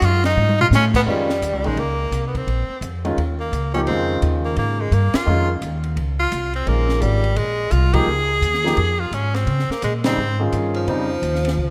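Intense and hypnotic, this short cut from a longer modal jazz piece swings at 171 BPM in Bb dorian. An edgy, forceful tenor saxophone carries the melody up front with vibrato and scooped notes, opening with a brief solo over an F7#9 as a drum fill passes beneath it, before a Bbm11 arrives at 1.1 seconds. A woody pizzicato upright bass with steel strings sits up front beneath it, while a compact cocktail drum kit adds dark cymbals, a high-tuned snare and a punchy kick. The concert grand piano enters at 1.1 seconds, intimate and polished, with deep bass, long sustain and audible action noise. Band accents punctuate the groove at 5.1, 7.9 and 10.0 seconds, all bathed in a lush hall reverb within a rough home demo mix.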